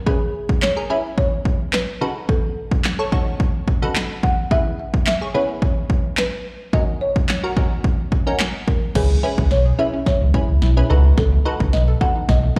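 Heard as a live gig through a venue's PA, this dance-pop excerpt carries club reverb and a light digital ambience. The mood is confident and driving, in a straight 4/4 over chords such as C#m7, B7/C#, E/C# and F#6/C#. A woody, rustic marimba struck with medium mallets carries the melody, its dry, boxy tone touched by delay and slapback echo. Behind it, a crisp, detuned wavetable chord stab with a wave-folded edge pumps with sidechain, while the house drum kit sits up front, layered and overdriven, with a punchy kick and snare, handclaps and crash cymbal. At 9.0 seconds a build-up and drum fill begin, and a deep, full sub bass with octave enters up front, joined by a glassy, crystalline pluck playing arpeggios in the background with chorus and delay.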